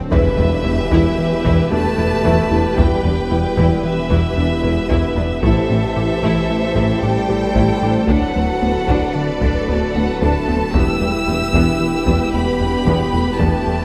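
A lush string-and-brass sound sits in a moderate scoring-stage reverb, opening with a background electronic swell and impact that runs to 2.8 s in this brooding, vast hybrid orchestral and electronic film cue in E minor, moving in 5/4 at 113 BPM through Em, Am7 and D6 back to Em. A smooth chamber violin section carries the vibrato-laden melody over a focused symphonic violin second line, with expressive portamento violas and mellow horns in the background, and very quiet cellos and double basses below. Underneath, a deep, dark analog bass riff and a menacing, evolving detuned saw bass add weight, while a very quiet chorused analog pluck arpeggiates, an ethereal phaser-touched pad holds chords, and a very quiet, saturated taiko ensemble strikes with hard sticks.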